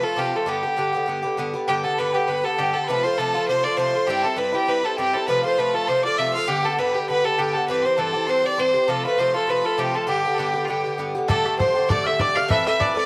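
Bathed in a moderate spring reverb, this bright, lively, lightly swung Celtic reel fragment puts an earthy bowed fiddle with a slapback echo up front on the melody over the metallic, double-strung picking of an Irish bouzouki, an airy tin whistle with vibrato and chiff joins in the background at 1.7 seconds, and at 11.3 seconds a twangy, very quiet fingerpicked banjo and a tight, damped bodhran arrive for the closing section.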